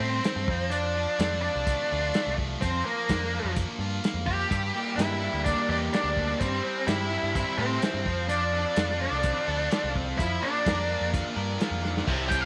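An up-front, dark octave-fuzz lead guitar carries the melody through this driving, brooding classic rock excerpt at 127 BPM, over a bright overdriven riff guitar, a round, deep picked bass and a muffled, lo-fi vintage drum kit in a small room, with a raw garage guitar joining at 4.5 seconds, a drum fill at 11.8 seconds and a biting, double-tracked overdriven guitar arriving at 12.1 seconds as chords move from F through Bb/F, Gm and C/G under light studio reverb.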